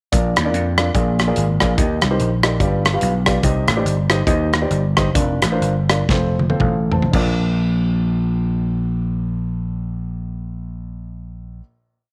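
Piano, bass and drums come in together on a short, uplifting and reverent uptempo gospel piece with a swung feel, the acoustic kit driving a two-beat praise groove with a punchy kick and medium-tuned snare while the growly, amped slap bass walks and runs with slides. A polished grand piano adds rhythmic close-voiced chords and short fills as the band gradually slows from 3.4 seconds, and a drum fill at 6.1 seconds leads into a final chord. The drums stop at 7.3 seconds, leaving piano and bass to hold that closing chord in light studio reverb.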